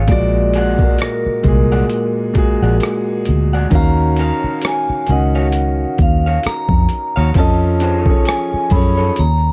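R&B and neo-soul with a late-night, introspective mood, this short excerpt sets a ringing vibraphone melody with slow motor vibrato over a slightly broken-up lo-fi electric guitar line with spring reverb, an intimate concert grand piano with audible action noise, a round, foam-muted bass and a gritty, thumpy boom bap sampler-style kit, moving from Bb7b13 to Ebm9 to F7alt in a dark, digital ambience.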